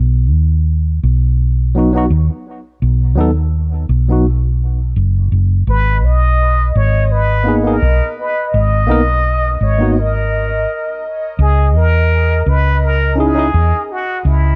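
A round, dark hollow-body bass opens this melancholic, cinematic trip hop excerpt at 84 BPM with a lightly swung sixteenth feel, joined at 1.7 seconds by a clean tine electric piano shimmering with harmonic tremolo, before a plunger-muted trumpet enters at 5.7 seconds with wah-wah inflections, vibrato and scooped notes trailing tape echo over a warbling, nostalgic lo-fi pad with chorus and phaser, all sitting over B, G#madd9 and C#madd9 chords in a dry mix marked by a faint mains hum.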